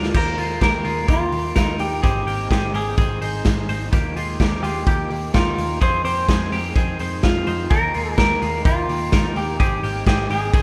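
A raw garage drum kit sits up front in this bright, breezy jangly indie pop excerpt, its punchy kick, medium-tuned snare, hi-hat and crash ringing in a stone room with a rolled-off top. A dark, clean electric guitar carries the melody up front through spring reverb, while a twangy, compressed twelve-string picks out arpeggios, a lo-fi, slightly broken-up guitar through a small old amp shimmers with tremolo in the background, and a foam-muted, round vintage bass anchors the low end. The straight 4/4 groove cycles through Ebadd9, Abmaj7 and Fm7 in a rough home demo mix with light reverb.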